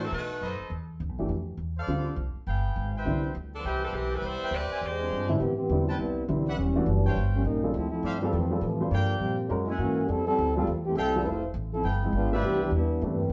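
A brisk swing at 205 BPM in 4/4 drives this joyful big-band excerpt, cut from a longer piece, with the upright bass playing its woody, pizzicato line from the first beat to the end. A bright, loose saxophone section with vibrato carries the melody in brief phrases, first at the very start and again from 3.6 to 5.3 s, while a clear, close-miked trumpet section punctuates the harmony with stabs from 0.4 s onward. A dark, mellow baby grand piano comps intimately, its short sustain and audible action noise giving it a natural feel. The music moves from C major into A minor at 5.4 s, where the clear trombone section, up front with light vibrato, takes over as the soloist through to the close over rich changes such as Am9, D#13 and Fmaj9, resolving on Cmaj9. The band sounds as though it is playing live in one room, wrapped in a wet studio reverb.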